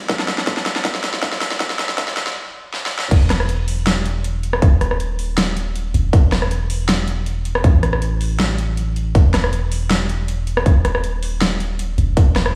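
A punchy, layered electronic kick drives this bright, lush future bass excerpt at 159 BPM in a half-time feel alongside a big-room dance kit with a huge snare and metallic hats, and after a filtered build-up with drum fills and a brief stop, the drop lands at 3.1 seconds as a deep, mellow, sine-like 808-style bass enters with sidechain pumping, all heard through a big sound system in a bare stone room.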